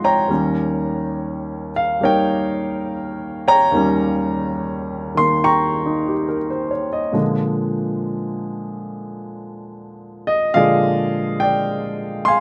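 The recording was made outdoors and is free of room sound, with only a light reverb around the instrument. A grand piano plays alone and up front, its tone warm and close. This is solo jazz at 70 BPM in 4/4, with a swung eighth-note feel and a sophisticated, playful mood, set in Eb mixolydian and tuned to A4 = 439 Hz. Across its range from Eb2 to Db6, the piano carries everything, settling on an Eb7 chord at 0.3 seconds before moving to Bb7 at 7.1 seconds. The 12.4-second passage is cut from a longer piece and stays within a single section.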